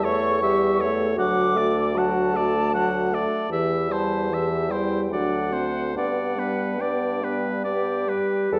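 A wet recital-hall reverb surrounds this serene, lyrical excerpt of a slow romantic movement for wind quintet in G major, moving in a rubato 3/4 at 69-79 BPM. A pure, crisp-attacked silver concert flute with vibrato carries the melody above a clear oboe second line, while a close-miked clarinet sits in the background and a roomy, distant French horn fills out the accompaniment. A mellow, soft-attacked bassoon holds the bass through chords that pass from A7/E to D, C/E and D7 before settling on G at 6.0 seconds.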